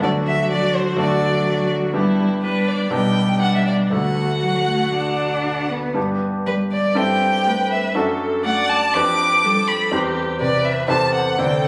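All four players begin together in this lively, graceful excerpt from a quick classical-period movement for piano quartet, played with a rubato feel. A single violin carries the melody up front, its rich, smooth tone even and shaded with vibrato. Beneath it, the solo cello sings a close, expressive second line with vibrato and portamento, while the viola adds a focused, bowed accompaniment. The concert grand piano sits up front with a bright, brilliant, polished sound and deep bass, filling out the accompaniment as the harmony moves through G/B at 2.9 seconds and Am7/G at 7.0 seconds. Captured on a phone in the room, the performance is bathed in a wet recital-hall reverb with a club-like ambience.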